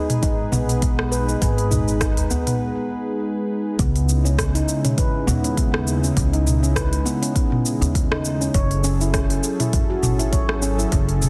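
A swung 4/4 groove at 101 BPM anchors this mystical, meditative stretch of organic downtempo in C# minor, cut from a longer piece. A deep, layered electronic kick and an afro-pop kit of cabasa, smooth hi-hat, rim click and toms enter just after the start, with studio reverb on both and soft clipping on the snare, while a woody pizzicato upright bass with steel strings carries the low end under sidechain pumping. Above them a ringing, dark handpan plays arpeggios with sharp finger strokes through a digital delay, and a detuned sawtooth pad holds mellow, slow-attack chords thickened by chorus and pumping. A felt-mallet bronze singing bowl, metallic and barely audible, shimmers with slow beating until 2.6 seconds, and a small, distant udu sounds briefly near 1.7 seconds. After a break, the harmony moves from G#m to C#m9 at 3.8 seconds and later to F#m9, all within light small-room ambience and a dense, heavily limited modern master.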